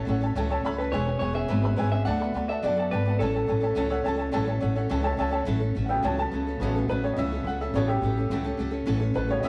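A fast, straight 4/4 rockabilly drive at 212 BPM in A major, cut from a longer piece, with a retro, rowdy mood and a rough cassette rehearsal-room sound in a small room. A twangy, slightly broken-up electric guitar with tape echo carries the melody until 5.1 seconds, over a dark, woody pizzicato upright bass up front and a boxy, bright picked steel-string acoustic guitar. A clear, slightly detuned upright piano with long sustain accompanies throughout, plays a fill at 4.9 seconds, then takes a solo from 5.5 seconds to the end.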